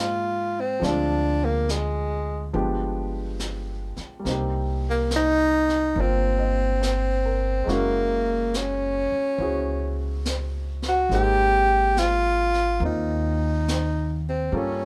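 Jazz ballad excerpt at a slow 70 BPM with a swung, melancholic and wistful feel, as an up-front, breathy tenor saxophone sings a mellow subtone melody with scooped notes over warm baby grand piano chords from Fm9 through G7b9 to Abmaj9, woody pizzicato upright bass, and a distant, roomy brush kit with a high-tuned snare that enters at 0.8 s, all set in a moderate club reverb.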